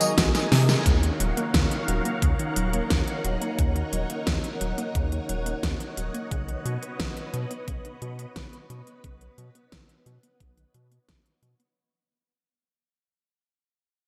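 A fat-snared pop drum kit sits up front with crisp hats and tambourine, its gated reverb giving this moody, nocturnal synthwave fragment a punchy 1980s sheen, and a knocking electronic kick joins at 0.2 seconds. A round, deep analog bass enters at the same moment, nasal and dark with a touch of tube saturation. A vintage string machine spreads lush sawtooth chords with a sub octave and a moving notch, its ensemble chorus breathing under sidechain pumping. In the background, a detuned unison pluck plays arpeggios through digital delay, with a filter sweep on it from 0.9 seconds. A smooth, warbling portamento lead is heard only briefly at the very start, while a drum fill and band accent lead into a passage that fades out over a lush hall reverb and a bright 1980s-style digital production.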